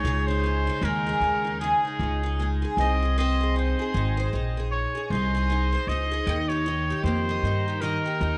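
Carefree and easy-going, this short acoustic pop excerpt in Ab major moves at 77 BPM with a light 16th-note swing, as a bright, vintage-toned trumpet sings the melody with light vibrato through tape echo and plate reverb over a shimmering, boxy, double-tracked twelve-string guitar and a woody pizzicato upright bass, all up front in a cassette-recorded home sound, moving from Dbsus2 to Ab at 2.8 seconds and Ebadd9 at 6.3 seconds.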